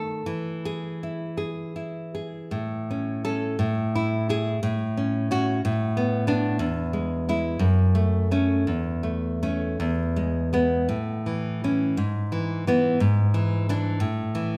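A bright, fresh-strung nylon-string guitar, fingerpicked up front with audible finger squeak, carries this sunny romantic classical solo in A major, a short cut from a longer piece that moves in a rubato 6/8 at about 51-62 BPM through a brief opening and a longer second section over harmonies such as A, E/A, F#m/A and Bm/A that settle on A5 at 14.0 seconds, all ringing in a wet recital hall reverb.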